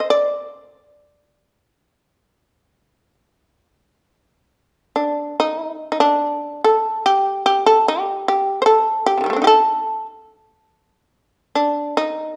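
Calm and austere, this brief passage of Japanese traditional chamber music is cut from a longer piece and unfolds in a free, rubato feel over a loose 4/4 pulse. A lone shamisen carries it from start to finish, sitting up front in the sound with a bright, percussive, buzzing tone drawn out by the plectrum. Its fretless voice ranges from C3 up to Eb5, giving the single line both a low grounding and high upper notes. The music moves through an opening section before shifting into a second, longer passage at 3.6 seconds that continues to the cut at 12.4 seconds. A moderate recital hall reverb surrounds the instrument, letting each plucked note ring briefly in an open, natural space.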